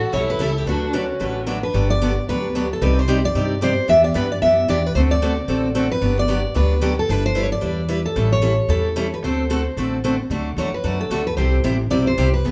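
A lively, swinging acoustic string swing groove in four carries this short cut from a longer piece, as a bright, freshly strung picked steel-string guitar takes the melody up front over a woody, thumpy pizzicato upright bass and an old-strung parlour guitar picking out chords, while a distant bowed violin adds an expressive, vibrato-laden second line with portamento until 1.7 s, and the lead guitar breaks into a solo at 10.3 s, all set in a live, single-room band sound bathed in wet large-studio reverb.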